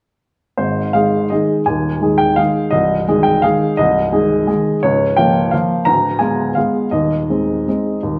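A lilting 3/4 waltz pulse moves with free rubato, hovering between 157 and 182 BPM, in this sparkling, playful classical piano waltz in Ab major, cut from a longer piece. A solo upright piano, woody and polished, sits up front, spanning C1 to Bb5 from 0.6 to 8.2 s as the harmony passes from Ab through Ab/C, Bbm/Db and Ddim7 to Ab/Eb. A wet recital hall reverb with a 1.4-second decay surrounds the playing.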